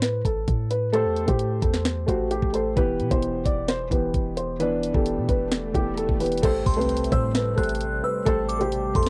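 A half-time trap groove drives this melancholic, hard-hitting hip hop excerpt, with an up-front electronic kit of knocking kick, sharp snare, bright hats and a crash cymbal. A deep, boomy 808-style bass with a sine body and a noise layer sits beneath, given grit by tube saturation. From the opening, a soft, felt-muted upright piano carries the melody with an intimate, thick-felt tone, colored by cassette tape and analog delay. At 0.9 seconds a dark, boxy grand piano joins as accompaniment with long sustain, moving from Am7 to Em and back. A very quiet electronic swell gathers toward an impact at 6.4 seconds, where a smooth, detuned sawtooth pad settles into the background with chorus, and moments later a glassy, crystalline FM bell line rings out high above. The dry, home-cassette sound keeps the whole piece close and lo-fi.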